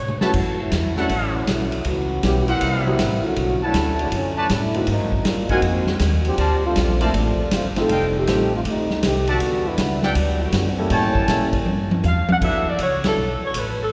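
A short cut from a longer big band swing piece, heard in a wet church reverb, where a dark trombone section with light vibrato takes a solo over 159 BPM in D major while a woody, thumpy upright bass and an up-front vintage drum kit with dark cymbals and a punchy kick keep the swing moving. A soft-attacked trumpet section adds stabs and a concert grand piano with audible action noise comps in the background, while drum fills frame the solo and the chords run from F#m7 through lush extended harmonies toward D69. The clear saxophone section, smooth and vibrato-laden, returns with the melody at 12.1 seconds, just before a band accent at 13.0 seconds in this brassy, swinging passage.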